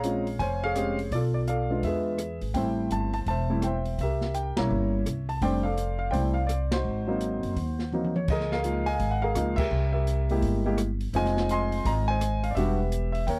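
Sophisticated and playful, this swinging jazz piano trio fragment features an intimate baby grand piano carrying the melody up front, its action noise audible and its long sustain touched by a slapback echo. A woody, growly upright bass played pizzicato sits forward beside it, while an acoustic drum kit with dark cymbals, a medium-tuned snare and a boomy kick sounds smooth in a small room. The band hits accents together, and a drum fill from 7.9 s leads into a new section at 8.3 s, captured in a dry, close 1970s-style studio sound.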